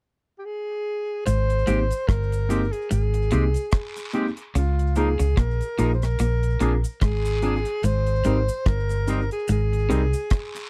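Tender and smooth, this short lovers rock reggae excerpt in Ab major moves at an unhurried 73 BPM with a swung feel. A breathy, whispered alto saxophone with tape echo opens alone at 0.4 seconds, its intimate, scooped lead joined at 1.3 seconds by a tight, dry drum kit and a round, foam-muted bass sitting up front, along with a twangy fingered guitar riff, soft cabasa and guiro carrying their own echo, and, from 1.7 seconds, a worn, slightly out-of-tune tine electric piano and bright picked guitar stabs tucked in the background. The close, dry 1970s-style studio sound keeps everything immediate as the chords drift from Abmaj7 through Db69 and Bb7 and back.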